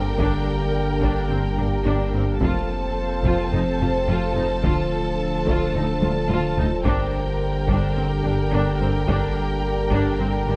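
Relentless and tense, this cinematic hybrid orchestral and electronic film-score excerpt in G minor moves at 108 BPM, as lush bowed violins carry a vibrato melody over a second violin line, violas, very quiet cellos and double basses, a mellow, distant French horn section, background trombones, a shimmering, detuned pulse-width pad with chorus, a deep round sine sub bass and close, dry taiko drums struck with heavy sticks that play a fill at 6.0 seconds, all set on a moderate scoring-stage reverb.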